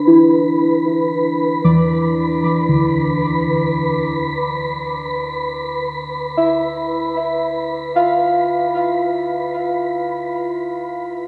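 Muted, felt-like synth keys and a breathy, wind-like tuned noise texture open this serene ambient fragment together, both sounding from the first moment to 11.3 seconds. The keys play dark, soft arpeggios with a fast attack and decaying tail, given a gentle shimmer by chorus and a diffuse ambient delay that lets each note linger. Alongside them, the airy texture holds sustained tones with a slow attack and long release, bathed in its own reverb. The harmony moves from Bmadd11/D to Bsus4 at 4.3 seconds, and a fade-out on the synth texture spans the whole passage. A lush scoring-stage reverb and a cassette-tape character give the sound a spacious, intimate glow, and the piece feels cut from a longer work.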